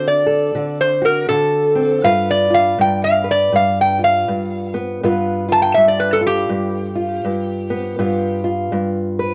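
Swaggering and gritty, this fragment of a swung 81 BPM blues in G mixolydian pairs a nasal, metallic resonator slide guitar played with fingerpicks and a steel bar, which carries the melody and takes a solo from 2.0 s, with a dark, woody, boxy fingerpicked ladder-braced acoustic on old strings that accompanies from D7 to G7, both up front in a dry, close 1970s-style studio sound with light reverb.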